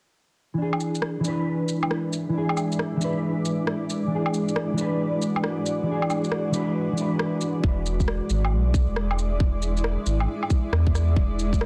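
Cut from a longer future garage piece, this wistful, ghostly passage opens with a dark, clean electric guitar played fingered at 0.5 seconds, its accompaniment thickened by ensemble chorus, tape echo and sidechain pumping over an E7 chord. Electronic woodblock, shaker and rim click soon set a swung 4/4 pulse at 136 BPM, with small room ambience around them. A granular cloud pad joins at 1.9 seconds, holding blurred, detuned chords that evolve with slow attack and long release, bright yet cloudy through its built-in reverb, while a filter sweep moves across the ambient pad in the opening part. At 7.6 seconds the guitar drops out as a tight, up-front electronic kick and a round, sine-based sub bass arrive together, the bass pumping against the sidechain as the pad and percussion carry on. A moderate concert hall reverb gives the whole a sense of space, and the dense, heavily limited master carries a cassette tape character.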